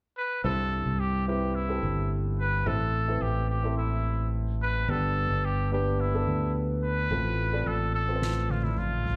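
This sounds like a live club gig heard through the venue's PA, with a light room reverb around a short cut from a longer piano-driven pop piece in a straight four. A clear, vintage-toned trumpet carries the solo melody from 0.2 seconds, up front in pop style with light vibrato and scooped notes, set in plate reverb and slapback echo. From 0.4 seconds a dark, woody upright piano plays mellow accompaniment with long sustain, also with plate reverb and slapback echo. A round, direct fingered electric bass plays low beneath it as the chords move through C, Am, G and F/A. At 8.2 seconds a soft-mallet drum kit plays a fill on snare and toms, with a fat snare in a big room, lifting the anthemic, uplifting mood.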